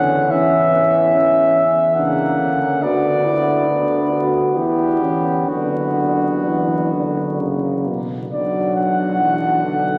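Melancholic and solemn, this classical, hymn-like excerpt for brass band moves in a rubato three-beat pulse. A warm, present cornet carries the melody up front, while a mellow, distant flugelhorn with light vibrato sings a second line beneath it. Two euphoniums share the accompaniment: one dark and close-miked with a soft attack, the other punchy with vibrato. A clear, vintage-toned tuba holds the bass in the background. The harmony passes through chords such as Bm/D, Em and F# before settling on Bm at 8.3 seconds, where a new section begins. A wet cathedral reverb gives the ensemble a long, spacious tail, and a layer of vinyl crackle lends the sound an aged surface.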